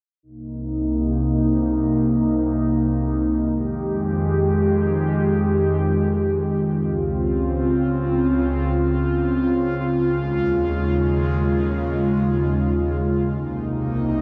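An airy, breathy synth pad carries this hazy, ethereal hip hop fragment on its own, sitting up front from 0.2 to 14.2 seconds in free time, spanning C2 to G4. Its soft, full-bodied tone blends detuned sawtooth and triangle waves with a noise layer and a touch of ring modulation, shaped by a slow attack, long sustains and a lingering release. Chorus and a low-pass filter color the pad, and a filter sweep runs across it from 0.2 to 13.4 seconds, giving the mellow sound a drifting quality. The harmony moves through Cm7, Fm9, Dbmaj7 and Eb9sus4 before returning to Cm7 at 13.4 seconds. A huge ambient reverb with a 4.2-second decay surrounds the pad, turning this cut from a longer piece into a floating, dreamlike wash.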